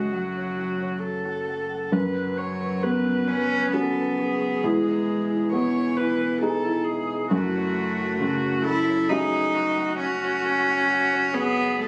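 A fragile, longing neoclassical passage for piano and strings, cut from a longer piece, opens at once with every part sounding together from 0.0 seconds: a clear, nasal cello carrying the second line up front, bowed sul tasto by one player with a floating tone. Beneath it, a felt-muted upright piano gives a mellow, intimate accompaniment across a broad span, while a single viola adds airy bowing with light vibrato and a gentle, warm attack. A very quiet concert harp rings out bright, thumb-plucked arpeggios high above, and a pure sine sub bass sits deep and dark in the background. The music moves at a rubato 67 BPM in 3/4, in F# dorian tuned to A4 = 441 Hz, drifting from F#m through Bsus2/F# and Emaj7 before returning to F#m at 7.3 seconds. Heard through light reverb and club reverb, the sound was captured on a phone in the room, lending the whole a close yet roomy feel through its 11.9 seconds.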